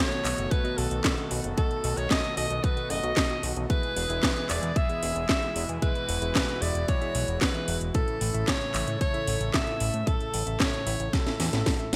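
A breathy, edgy alto saxophone with scooped notes leads this playful, danceable italo disco excerpt at 113 BPM in A major, its pop-style solo melody sitting up front through a digital delay. A punchy electronic kick and a house kit of handclaps, metallic hats and a cracking gated-reverb snare drive the straight 4/4 groove alongside a fat, detuned sawtooth analog bass. A smooth chorused analog pad and clean tine electric piano stabs sit in the background over a B7, E, A progression, with a drum fill from 11.1 seconds, all within a bright 1980s-style digital production and a lush hall reverb.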